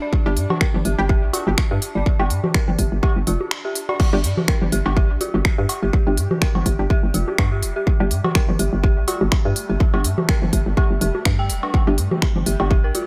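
An eerie, inharmonic synth bell riff with chorus, tremolo and dub echo opens this sparse, quirky minimal techno excerpt at 124 BPM, over a swarming, warbling drone with phaser in the background and swung sixteenths. A punchy up-front kick, a hollow, bouncy FM bass with tube saturation, and muted, detuned dub chord stabs with phaser and tape echo arrive within the first second. A house kit of crisp hats, finger snaps and crash cymbal joins cowbell, bongos and congas in an echo-heavy mix that pauses for a brief break at 3.5 seconds.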